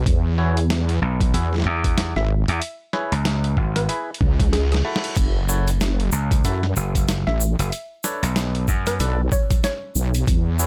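A heavy, saturated wobble bass anchors this funky, playful glitch hop excerpt at 94 BPM with a swung feel, joined by a punchy, overdriven slap bass from 1.0 seconds and driven by a thumpy, gritty electronic kick alongside a pitched-down, tape-toned sampler kit of crash, hi-hat and snare, while a twangy overdriven clav pumps through delayed stabs, a dark, woody wave-folded pluck carries the melody over Eadd9, C#m7, F#m7 and Bm9, a reverse cymbal rises into a drum fill at 4.3 seconds, and a grainy egg shaker joins at 5.2 seconds in a dry, close mix.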